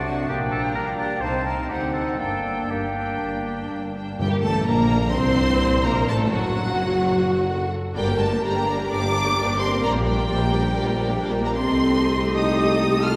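A focused, vibrato-rich violin section carries the melody through this stormy, urgent fast romantic movement in G minor at 128 BPM, with a distant second violin line, close lush violas, tight French horn chords, and smooth cellos and double basses underneath, while airy flute, clear oboe, bright clarinet and warm bassoon colour only the first 4 seconds before a tuba and a brief stroke of hard-mallet timpani arrive at 4.2 seconds, all cloaked in a wet church reverb in this excerpt from a longer piece.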